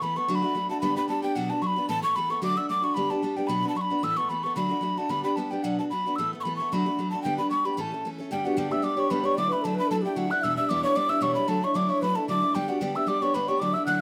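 Bright and cheerful, this Celtic reel excerpt bounces along in a lightly swung 4/4, cut from a longer piece. A metal whistle carries the melody from the start, close-miked and up front, its airy tone marked by a breathy chiff on each crisp note and a touch of vibrato. Beneath it, a picked steel-string acoustic guitar sits equally forward, its round auditorium body and occasional finger squeak giving the accompaniment a lived-in feel as it cycles through D, G, Bm and Asus2. At 8.3 seconds the tune moves into a new section, where the harmony shifts to G, Dadd9 and Em7 and a wooden flute joins underneath with a second line. The flute is a straight-toned, softer presence with lifted highs, sharing the whistle's hollow character. A moderate studio reverb gives the trio a cohesive, natural space.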